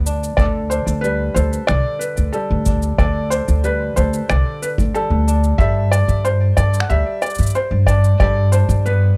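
Folktronica with a hopeful, warm glow, heard in a short cut from a longer piece in a straight four-beat feel. A fingerpicked kora rings out crisp arpeggios through a digital delay, while a woody pizzicato upright bass sits up front beneath it. An electronic shaker and finger snaps add a tape-warm, produced texture in studio reverb, joined by a tight, airy kick drum played with bundle sticks in a small room. From 0.4 s a felt-muted upright piano carries the melody, soft and intimate with audible action noise and short sustain, also treated with digital delay. The harmony rests on Dsus4 before shifting to Gsus2 at 5.6 s, and the kick drops out at 8.3 s, all set in a dark production with light reverb.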